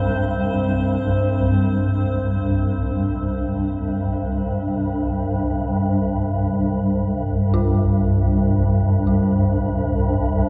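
Dark ambient drone in free time, this short excerpt cut from a longer piece feels desolate and tense, set in a cavernous cathedral reverb with the soft grain of cassette tape. Up front, a swarming drone sits low in the register, its detuned, granular sine layers evolving slowly with long, sustained releases. For the first 2.0 seconds, an icy glass pad adds crystalline, airy shimmer with chorus and a breathy noise layer, while a deep, moody analog pad holds sustained chords alongside it at a barely audible level. Throughout, an eerie detuned synth bell plays mellow, inharmonic FM arpeggios in the background, each note striking quickly and decaying into chorus and delay. Once the pads fall away at 2.0 seconds, the drone and the bell carry the bleak, unsettled mood on their own.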